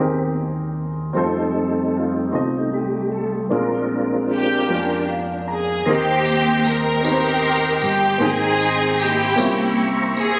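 Uplifting and hopeful, this slow gospel excerpt in a straight 6/8 opens with a clear tonewheel organ solo, its sustained chords colored by chorus vibrato and a slow rotary speaker, over a woody, short-sustained upright piano and a round, punchy fingered electric bass. At 4.3 seconds a dark, lush string section enters up front with the bowed, sul tasto melody, the piano adds a fill just before the change at 5.9 seconds, and a jingly, close tambourine joins at 6.2 seconds. The sound has moderate concert-hall reverb and studio ambience, captured on a phone in the room, with rich seventh and ninth chords in the progression.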